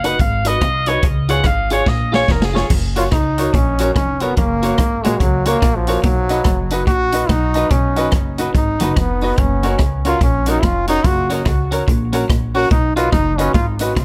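Ska, bouncy and joyful, cut from a longer piece, where a bright, vintage-toned alto saxophone with tape echo opens the melody before a drum fill hands off at 2.7 seconds to a brilliant, close-miked trombone with vibrato, all over woody pizzicato upright bass, a swinging big-band drum kit up front with a punchy kick, warm upright piano stabs, a slightly broken-up electric guitar in the background and a very quiet, twangy electric guitar riff.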